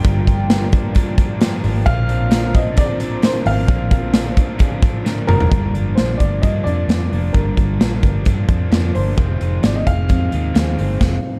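Jangly indie pop at 131 BPM with a wistful, restless mood, cut from a longer piece, where a worn, woody, slightly detuned upright piano carries the melody over twangy twelve-string electric guitar arpeggios, bright overdriven electric guitar accompaniment, a round, foam-muted fingered bass and a punchy, up-front rock drum kit with bright cymbals, while a hollow, flute-like pad with chorus holds soft sustained chords until 5.5 seconds, a very quiet jingly tambourine comes and goes, a drum fill at 5.1 seconds leads into a new section over Gm7 and Fm7, and a band accent closes it at 11.0 seconds, all in a dark, dry production.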